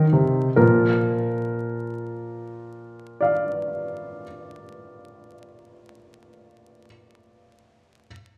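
A graceful, elegant excerpt of a classical-period piano sonatina in Bb major unfolds at a rubato 45 BPM in 6/8, its solo grand piano clear, intimate and up front with audible action noise, ranging from Bb2 to F5 across 8.1 seconds inside a wet recital hall reverb dusted with vinyl crackle.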